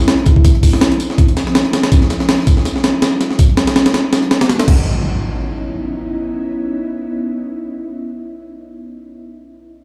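Heard through a big sound system in a bare room, this raw, frenetic drum and bass cut from a longer piece carries a large studio reverb, a moderate echo chamber tail and a faint mains hum. At 163 BPM in 4/4, with a light swing on the 16ths, a compressed, sampler-style breakbeat kit sits up front, its thumpy kick, high-tuned snare, hi-hat and crash cymbal sounding gritty and re-recorded in a small room. Behind it, a second breakbeat kit with hi-hat, snare and tambourine adds a dark, saturated, rolled-off crunch through high-pass filtering, tucked into the background. An ethereal pad of detuned sawtooth and triangle voices in unison sustains mellow, slow-attack chords through ensemble chorus and its own reverb, a moving notch shifting its airy tone as the harmony passes from Dm9 to D#m9 and settles on C#m9 in C# minor. Both kits stop around 4.8 seconds as an electronic impact hits up front at 4.7 seconds, and the pad rings on until 8.6 seconds.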